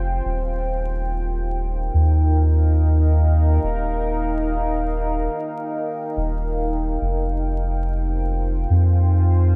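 Vinyl crackle and a light reverb frame this hazy, spacious ambient dub excerpt at 71 BPM in 4/4. A moody sawtooth pad, detuned with a sub octave, chorus and its own reverb, holds slow-blooming sustained chords from Eb, shifting to Fm7 at 7.0 seconds. Beneath it sits an up-front sub bass, round and soft, with a fast attack and long held notes.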